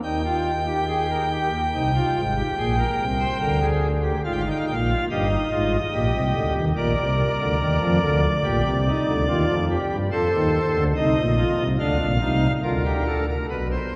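Contemplative and solemn, this short passage cut from a longer piece is a baroque-style three-part fugue in classical form, moving in a straight 4/4. A single pipe organ carries every voice from 0.0 to 14.0 s, played on a cornet solo stop with a nasal edge, a romantic voicing and a tremulant, its line set up front and spanning G1 to G5. The harmony moves from Eb through Ab and Bb7/D to Eb/G and Bb, then settles on F7 at 10.1 s as the phrase pushes onward. A long church reverb of 3.4 s surrounds the organ, and the listener seems placed further back in the room, so the tones bloom and linger in the space.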